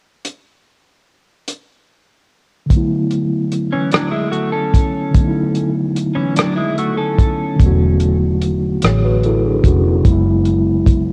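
A dry, dark soul drum kit of hi-hat, kick and rim click opens this slow, sensual six-eight R&B excerpt, sitting up front with a tight kick and rolled-off top under a cassette tape haze. At 2.7 seconds a mellow tine electric piano arrives through its built-in speakers, a filter sweep running across its E9sus4 and F#9sus4 chords, and at 3.7 seconds a clean, compressed, picked electric guitar with analog chorus adds a second line. A round, foam-muted fingered bass enters at 7.6 seconds, and the mix sits in light studio reverb with a homespun feel.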